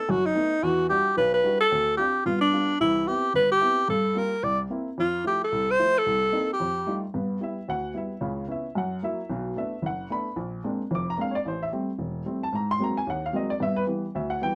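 A breathy, whispered alto saxophone with scooped notes and vibrato carries the melody over a dark, mellow baby grand piano with audible action noise, in this sophisticated, swinging jazz clip in G major at 222 BPM, heard close and intimate in a small room before the saxophone drops out at 7.0 seconds and the piano carries on alone through a chromatic turnaround back to G6, ending at 14.6 seconds.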